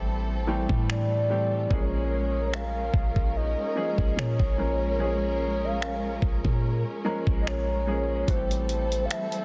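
A moody, sensual contemporary R&B fragment at 73 BPM opens with a clear, worn baby grand piano, lush bowed studio strings and a deep, boomy 808-style bass sitting up front, moving from Am7 to Bbm7 at 1.7 seconds. A dusty, compressed sampler-style kit with finger snaps, hi-hat, a thumpy kick and a gritty, softly clipped snare enters at 0.7 seconds with a light 16th-note swing. At 0.9 seconds a round, octave-layered synth lead carries the melody, thickened by chorus, phaser, delay and vibrato, within a dense, heavily limited mix with light reverb.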